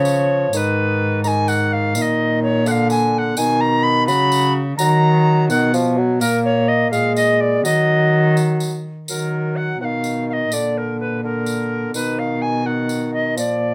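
Solemn and courtly, this short cut from a renaissance-style consort dance in Eb minor moves at 84 BPM in a straight 6/8, with a pure, wooden tenor recorder carrying the melody up front with a soft attack and a touch of chiff, a mellow, lightly vibrato bassoon supplying accompaniment, a dark, gut-string cello bowing the bass line, and a jingly, dry tambourine entering at 0.1 s, all in light reverb as the harmony turns to Eb harmonic minor from 9.1 s.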